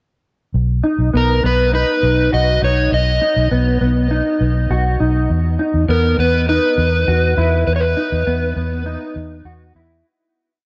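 An overdriven slide guitar carries a motif-based melody with a warm, overdriven edge, entering at 1.2 seconds and dropping out at 8.5 seconds, over a clean, compressed electric guitar ostinato of arpeggios washed in analog chorus and delay. A vintage foam-muted bass holds a round, punchy eighth-note pulse from 0.5 seconds, and the whole short dream pop piece in B major at 101 BPM floats in a huge ambient reverb and worn, warbly cassette tape drift. The mood is ethereal and dreamy, moving from B to E5 before a fade-out from 7.7 seconds.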